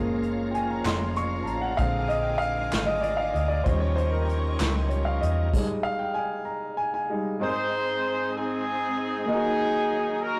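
This slow, uplifting gospel passage in 6/8, cut from a longer piece, opens on an intimate grand piano with audible action noise, carrying the accompaniment up front beside a round, dark hollow-body electric bass. Behind them, a bright tonewheel organ with a slow rotary speaker and chorus vibrato and a pure, floating string section hold sustained chords in the background. A vintage brush drum kit with a punchy kick and a rolled-off top enters almost at once, and very quiet, crisp group handclaps join briefly. At 5.5 seconds the strings and bass stop, the drums follow shortly after, and the piano and organ carry the hopeful mood through the pause. At 7.4 seconds a smooth-topped horn section with light vibrato takes the melody up front over piano and organ, all set in a moderate stone-room reverb with a rough rehearsal-room character and warm saturation.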